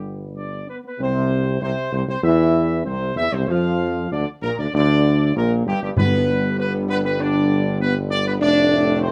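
A present tuba sits up front, anchoring this solemn, triumphant classical brass passage at 98 BPM in a straight 4/4, cut from a longer piece. Above it, a dark trumpet section carries the melody with a soft attack, sounding distant and roomy. A mellow French horn section, lightly vibrato and close-miked yet set in the background, holds sustained chords alongside a warm trombone section that also sings with a touch of vibrato. The harmony moves from G to C at 1.0 seconds, through Bb6 and back to G, then settles on F near the close. Timpani, played with medium mallets on calf heads and sounding close and dry, enter at 6.0 seconds and sound until 6.8 seconds. Light reverb and detailed microphones give the ensemble a clear, dignified sound.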